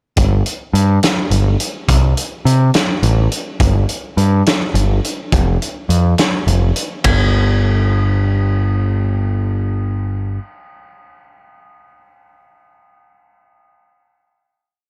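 Carefree yet wistful, this short indie rock piece rolls along in a straight 6/8 feel. A growling picked electric bass carries a syncopated riff from the start, its tone dark, round and overdriven, sitting up front in the mix and reaching down to low F. Beside it, a loose indie drum kit plays a 6/8 groove across hi-hat, kick, snare, ride and toms, with a punchy kick, a medium-tuned snare and a gritty, saturated character whose top end is rolled off. The drums drop out at 7.2 seconds, leaving the bass to hold the final note alone until the piece ends at 10.4 seconds. A light reverb gives the whole a touch of room around it.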